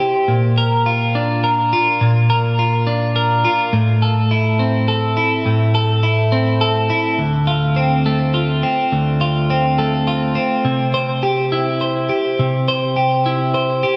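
Drenched in a lush hall reverb that gives it a big arena sound, this brooding, cinematic rock passage in 3/4, cut from a longer piece, features a lone twelve-string electric guitar, bright, clean and twangy, picked and compressed up front with tape echo, moving through Bb, Am, Dm7 and C over 14.0 seconds.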